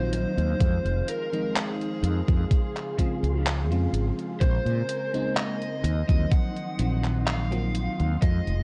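A nostalgic, woozy vaporwave excerpt in Eb dorian at a slow 63 BPM opens on an overdriven lead guitar with tape echo singing the melody over a lush, dreamy FM electric piano with phaser, a silky string machine with 12-bit grit drifting in the background, and a round, dark fretless bass up front, while a detuned 8-bit drum machine brings gated-reverb handclaps and hi-hat at 0.1 seconds and a thumpy electronic kick arrives at 0.6 seconds, all through a lightly reverberant, muffled cassette sound as the chords move from Ebm69 through Fm7, Dbmaj7 and Bbm9 back to Ebm69.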